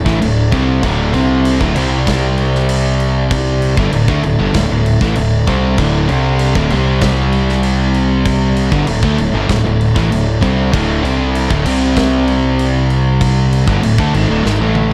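A heavy, ominous stoner and doom metal excerpt at 97 BPM opens on a growly, overdriven fuzz bass up front, with a thick, dark fuzz guitar riff and a very quiet, piping tonewheel organ holding sustained chords through a slow rotary speaker, its key click faintly audible. A second fuzz guitar and a bright, double-tracked overdriven guitar join the riff in the background almost at once, alongside a big rock drum kit with a tight kick, medium-tuned snare and rolled-off top, while the harmony shifts between D5 and C5. The production is dark with light reverb, and a drum fill closes the passage at 14.5 seconds.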